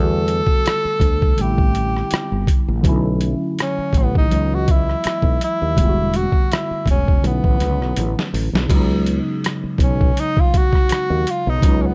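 A dark, warm production with digital ambience frames this sultry, late-night excerpt of neo-soul R&B with a light swing. Up front, a breathy tenor saxophone carries the clear, vibrato-tinged melody through a slapback echo, over a worn, slightly out-of-tune tine electric piano with phaser, a growly, woody fretless electric bass, and a gritty, pitched-down boom bap sampler-style kit with a thumpy kick that enters at 0.3 seconds. A drum fill at 8.0 seconds leads into a new section at 8.7 seconds, where the harmony moves to a suspended ninth chord.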